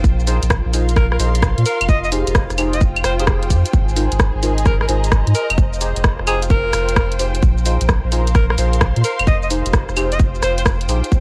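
Moody and late-night, this short two-step UK garage cut in F minor swings at 130 BPM over a tight, up-front electronic kick and a tape-warmed garage kit of claves, hi-hat, rim click and shaker. A thick, saturated sub bass sits beneath a very quiet silky string machine, veiled con sordino strings that pump against the beat, and dark, wave-folded chord stabs colored by chorus, phaser and analog delay. From 1.0 seconds a bright alto saxophone sings a jazz-style solo with vibrato, scooped notes and echoing delay, all captured in a dry, gritty cassette sound.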